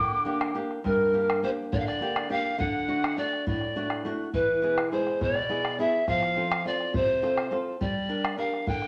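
A wet studio reverb gives this short Andean folk passage a roomy sheen. It moves at 69 BPM in a straight 6/8 in G dorian, and the mood is melancholic yet festive. A polished pan flute of wood carries the melody with an airy, straight tone and a tongued chiff, while a breathy, mellow quena of cane adds a hollow, vibrato-tinged second line for only the opening 0.6 seconds. Beneath them, an up-front flamenco guitar is fingerpicked with a warm acoustic body, and a deep, dark bombo sounds close and dry from 0.4 seconds onward. The harmony moves from Gm through D, E and F before returning to Gm near 7.8 seconds, as this portion of a longer piece breaks off.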